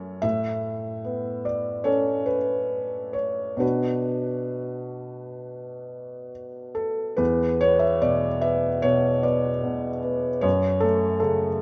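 Light reverb and a rough home-demo mix frame this short piece of neoclassical minimalist piano, cut from a longer work and tuned to A4 = 443 Hz, with an intimate, reflective mood. A felt-muted upright piano plays solo throughout, its mellow, vintage tone with a thin felt touch sitting up front, ranging from E2 to E5 in 4/4 at a rubato 65-76 BPM. The harmony moves from Aadd9 to Bm, then shifts at 7.2 seconds to a new passage over E5 and F#m.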